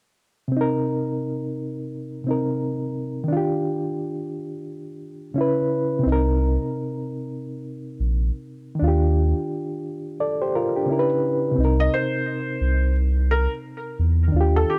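Lo-fi hip hop at 87 BPM in 4/4, with a swung 16th-note feel and a nostalgic, hazy mood, cut from a longer piece. A reedy, worn electric piano opens at 0.5 seconds, slightly out of tune and clean, shimmering with fast tremolo as it plays through its built-in speakers over chords moving from Cm7 to Ebmaj9 to Dbm7. At 6.1 seconds a deep, round sine sub bass arrives up front, with a fast attack, sustained notes and a warm weight. At 11.8 seconds a felt-muted upright piano takes the melody in a soft, mellow, intimate voice, its thin felt tone trailed by analog delay. Light reverb surrounds the recording, and the harmony returns to Cm7 as a new section begins.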